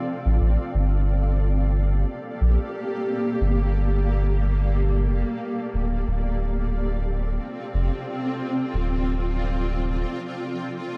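Spacious and hazy, this ambient dub piece, cut from a longer work, unfolds in a lightly swung 4/4. A granular cloud pad holds sustained chords from the opening moment to the end at 11.0 seconds, its detuned, blurred tone evolving through a built-in reverb of its own. Beneath it, a soft dub sub bass enters at 0.3 seconds and drops out at 10.0 seconds, sitting up front with a deep, round sound that speaks quickly and then sustains. The harmony drifts from Dm7 to a long stretch of Gm9 before settling back on Dm7. Apart from the pad's own reverb, the overall sound stays fairly dry, letting the mellow cloud of the pad and the weighty bass fill the space together.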